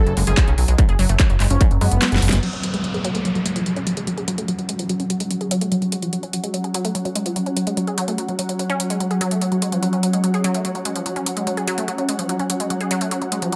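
A fat, nasal analog bass drives the opening of this psychedelic, driving trance excerpt at 146 BPM in straight 4/4, sitting up front beside a distorted electronic kick until the kick drops out and a drum fill arrives at 2.0 seconds. Over it, a bold, wave-folded unison lead carries a brief mellow melody with vibrato, phaser and delay, while a punchy, warbling unison pluck riff with tape echo pumps with sidechain compression throughout. A big-room dance kit supplies a huge snare, metallic hats, handclaps and crash cymbal, overdriven and filtered, and an evolving, morphing wavetable pad holds chords in the background with chorus and phaser. By 2.4 seconds the lead and bass have stopped as an electronic downlifter leads into the second section, where filter sweeps run across the pluck and a pad. From 4.1 seconds an ethereal, airy pad with ensemble chorus and reverb floats above, all set in a moderate digital room ambience.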